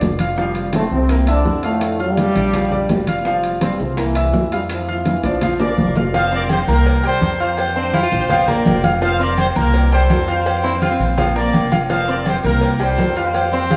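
A straight salsa groove drives this festive, joyful passage cut from a longer piece. It is built on a woody, thumpy upright bass up front, a brilliant, polished grand piano, background congas, ringing timbales and agogo bells, grainy maracas, and very quiet round bongos and cowbell. A mellow, tight trombone section carries the melody from 0.4 seconds, a bright trumpet section with tape echo enters at 5.6 seconds during a drum fill, and a breathy, whispered baritone saxophone adds brief second-line phrases in the background from 7.8 seconds, all set in a lush plate reverb heard from further back in the room.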